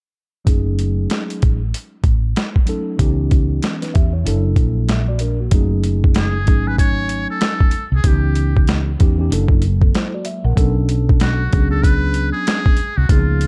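A dark, warm production with digital ambience frames this nocturnal, mellow jazz-hop excerpt, where a gritty, compressed, pitched-down boom bap sampler-style drum kit with a thumpy kick and high-tuned snare sits up front beside a growly, punchy fretless electric bass, a clean tine electric piano heard through built-in speakers provides accompaniment, and at 6.2 seconds a buzzy, thin trumpet with a metal mute takes a jazz-style solo with light vibrato and slapback echo.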